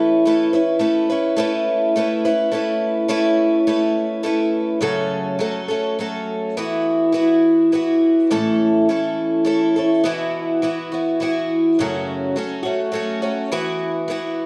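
A picked twelve-string acoustic guitar carries this short rock fragment entirely on its own, its octave-doubled courses giving a shimmering, jangly ring that sits up front in the mix. The instrument sounds woody and a little boxy, with the dulled bite of old strings, and it moves through a range from F#2 up to B4. The mood is hopeful, set in a three-beat metre with a straight feel. The guitar opens on a ringing Aadd9, and from 4.8 seconds it settles into a longer passage that cycles through F#m, Esus2, A and Bsus4 before returning to F#m and Esus2. A wet scoring-stage reverb with a long 1.7-second tail surrounds the playing, lending it a spacious, hall-like glow as the clip, cut from a longer piece, ends at 14.5 seconds.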